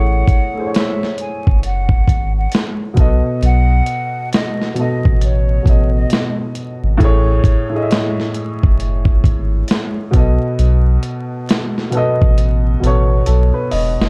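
Melancholic and reflective, this lo-fi hip hop clip has a swung 4/4 feel: a breathy, distant jazz flute with tape echo carries the melody only until 6.4 seconds, while a dark, woody upright piano with cassette tape color plays accompaniment over Amaj7 and B7 chords. A deep, round dub sub bass sits up front beside a gritty, compressed sampler-style drum kit of thumpy kick, medium-tuned snare and hi-hat that enters at 0.3 seconds and closes with a fill from 12.4 seconds. Light reverb and vinyl crackle give the whole a dusty finish.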